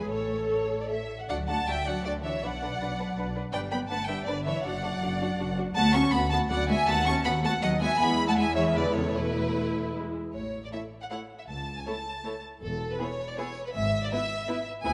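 Lively and cheerful, this quick classical-period movement for string orchestra moves in 3/4 at around 146-167 BPM with a rubato feel, starting in D major and shifting to A major from 5.8 s. Up front, a focused violin section carries the melody with vibrato, while a second, more distant violin section supplies a smooth, even second line beneath it. A warm, expressive viola section fills in the accompaniment, and a dark, woody cello section joins a close, rich double bass section on the bass. All five sections are bowed and play together throughout the roughly 15 seconds, a passage cut from a longer piece. The harmony travels through B7/D# to E and Esus4 before settling on A and A/C#, and a wet scoring-stage reverb surrounds the ensemble.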